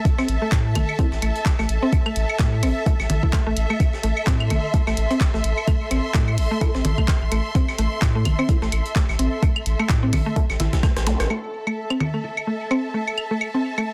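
A swung 128 BPM minimal techno groove in A minor rests on a soft, up-front electronic kick, a deep, saturated sub bass with sidechain pumping, a clicky kit of handclaps, hi-hat and rim click, and gritty, high-passed hat and snare from a sampler-style breakbeat kit in the background, while layered claves and congas trail tape echo. Over this, a woody, bright FM mallet-like pluck riff pumps through chorus and dub echo, a muted, nasal dub chord stab sits dark behind a phaser, and a lush bowed string section with vibrato and sidechain pumping sets a cool, quirky mood. A drum fill at 10.8 seconds and a brief zap with a band accent at 11.2 seconds close the first section. The kick drops out at 10.9 seconds and the other drums and bass fall away at 11.3 seconds, while the strings, pluck and percussion carry on to the end of this excerpt.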